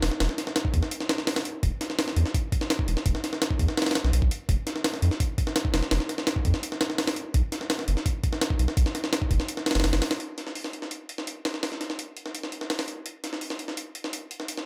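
A straight 4/4 drum and bass groove at 168 BPM drives this frenetic, nostalgic jungle passage, cut from a longer piece. A compressed, sampler-style drum kit sits up front, pitched up and gritty, with a thumpy kick, a high-tuned snare and hi-hats. The kit carries the sound of a large room, thinned by high-pass filtering on the hats, snare, kick and room. Beneath it, a soft dub sub bass built from triangle and square waves holds deep, round, sustained notes with a fast attack, spanning E1 to F2. The kick drops out at 9.5 seconds near the end of the drop, the bass stops at 10.0 seconds, and the drums carry on alone until 14.7 seconds in a dry mix with little reverb.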